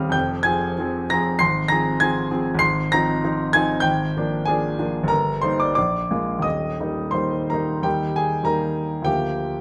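In a flexible two-beat metre, the pulse bends and stretches with generous rubato throughout this short fragment of a romantic character piece. A single grand piano carries everything, its tone clear and intimate, ranging from deep bass notes up into the high treble. The mood is passionate and brooding: the harmony dwells on shadowy minor colour before turning toward a brighter major resolution around 6.4 seconds. A new passage begins at 7.8 seconds, and the fragment breaks off at 9.6 seconds. Close, detailed miking places the instrument up front, so the mechanical noise of the action is audible, while a moderate recital-hall reverb adds a natural sense of space.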